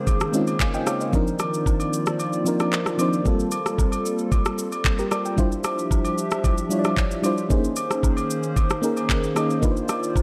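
Late-night and hypnotic, this amapiano groove sits at 113 BPM in a straight 4/4 feel, centred on G minor, and is cut from a longer piece. An FM electric piano with tremolo carries the accompaniment up front, its full-bodied, decaying tone flecked with a noise layer, moving through minor eleventh chords from Bbm11 and Cm11 to Gm11 and Dm11. Beneath it, a hollow, flute-like pad holds sustained chords with a slow attack and a mellow chorus shimmer. The electronic R&B drum kit is also up front, built on a knocking kick with handclaps, rim click and shaker, and the kick drops out briefly between 2.2 and 3.3 seconds. Lower in the mix, agogo bells and woodblock add a vintage, band-limited acoustic colour. Light reverb and digital ambience give the whole a dark, warm production.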